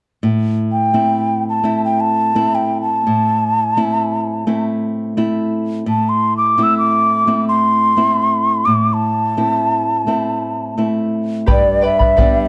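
In free time and A minor, this earthy, festive Andean folk passage opens at 0.2 seconds with a small, fingerpicked nylon-string guitar holding an Am chord, joined at 0.7 seconds by an airy, hollow wooden quena carrying the melody up front with vibrato and tongued notes. At 11.5 seconds the harmony moves to G as a bright charango adds shimmering double strings and a deep, close bombo enters. A moderate recital hall reverb frames the dark production of this fragment cut from a longer piece.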